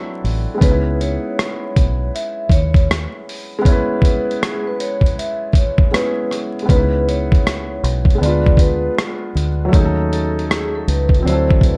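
A swung, unhurried 79 BPM groove in 4/4 anchors this reflective, melancholic lo-fi hip hop fragment in C# minor, cut from a longer piece. The boom bap sampler-style drum kit sits up front with hi-hat, rim click and a thumpy kick, its compressed, gritty sound re-recorded in a large room, while a deep dub fingered electric bass, dark, round, punchy and foam-muted, holds down the low end from 0.2 seconds. A felt-muted upright piano opens the track alone at 0.0 seconds, soft and intimate with audible action noise, playing accompaniment over chords that move from D9 to C#m7, then later through Ddim7 and D#m7b5 before returning to D9. A vibraphone with medium mallets carries the melody from 0.6 seconds, its metallic ring colored by a slow motor vibrato and a vintage, band-limited tone. Vinyl crackle runs through the dry mix, and the music shifts into a second section at 6.7 seconds.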